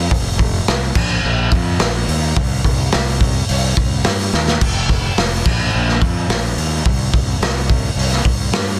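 Hard rock at 107 BPM in a straight 4/4, this short excerpt cut from a longer piece feels driving and menacing. A fuzz-soaked fingered electric bass carries the low end from F1 to G2, its overdriven, punchy tone heard both direct and through an amp. A raw garage drum kit sits up front, with a pumping small-room sound, dark cymbals, a medium-tuned snare and a punchy kick, all saturated and gritty with a rolled-off top. Crash cymbal, hi-hat, kick and snare drive the groove, and a drum fill breaks in at 4.3 seconds. The mix is dry, dense and heavily limited in a modern style.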